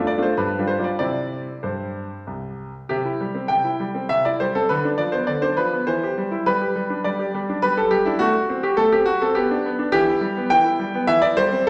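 A solo grand piano opens this elegant, graceful excerpt of a classical-period sonatina in C major, moving at a rubato 102 BPM in 3/4 and tuned to A4 = 442 Hz. The piano sounds brilliant and smooth with a vintage, short-sustained tone, sitting up front across a range from C2 to G5 while a wet recital hall reverb blooms behind it. After a brief opening phrase that settles from G7 to C, a second section begins at 2.9 s and passes through Bdim/D, G, F#dim/A and Em before landing on C/E at 11.1 s.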